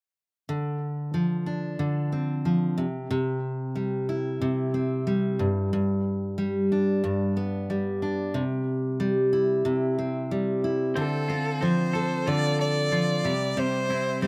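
Sunny and easy-going, this short pop excerpt moves at 92 BPM in 4/4 with a light swing on the sixteenths, settled in C major. A picked steel-string acoustic guitar, full-bodied and up front with the warm depth of a jumbo body, carries the accompaniment alone from 0.5 seconds through a progression of Dm7, C, G and C. At 11.0 seconds a new section begins as a bowed violin takes the melody, a single close player with a rich, smooth, even tone and vibrato. Alongside it, a twelve-string electric guitar adds quiet arpeggios, its clean, twangy sound bright and compressed. A light reverb gives the recording an open, outdoor air, and the excerpt ends at 14.3 seconds on a C chord.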